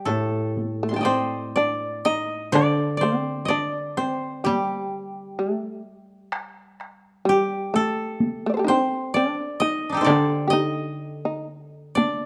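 Flowing in a rubato 4/4, this calm, austere fragment of Japanese chamber music sets a dry, woody koto melody played with fingerpicks over a lower koto accompaniment, while a buzzing, fretless shamisen adds a powerful plectrum-plucked second line and a taiko ensemble struck with hard sticks joins at 0.6 seconds, every part sitting up front under close, detailed microphones in a moderate recital hall reverb.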